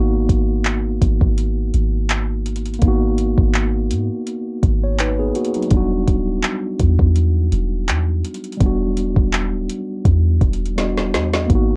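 A lightly swung sixteenth-note groove drives this moody, sensual contemporary R&B excerpt, where a smooth electronic drum kit of soft kick, woody snare, metallic hats and handclaps sits up front with a deep, round 808-style bass, while a mellow tine electric piano moves from G#m7 to Em7 at 5.7 seconds, a drum fill arrives at 10.8 seconds, and the dry mix carries the worn, warbling pitch drift of old cassette tape.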